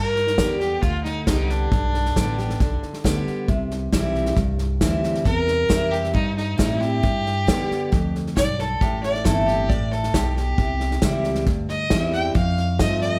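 A rich, focused bowed fiddle with light vibrato plays a solo throughout this sunny, easygoing honky-tonk and classic country piece at 135 BPM in C major, backed by a bright, full-bodied picked dreadnought acoustic guitar, a woody, thumpy pizzicato upright bass, and a small-room acoustic drum kit played with bundle sticks, its punchy kick and medium-tuned snare up front, all under light reverb as the chords move from G through C, Am and F.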